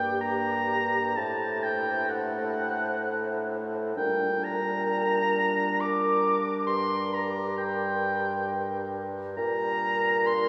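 Classical wind quintet in a slow, romantic G minor movement at 66 BPM in 3/4, yearning and solemn, with uneven beats and rubato, heard as a 10.5-second fragment of a longer piece. A clear, up-front oboe with light vibrato sings its line above a hollow, pure silver flute carrying the melody in the background, while a mellow French horn and a smooth-topped clarinet fill in the accompaniment and a distant, soft-attacked bassoon supplies the bass. The harmony moves from Gm through D7/A and back to Gm, all bathed in a long, wet cathedral reverb of a church or concert hall.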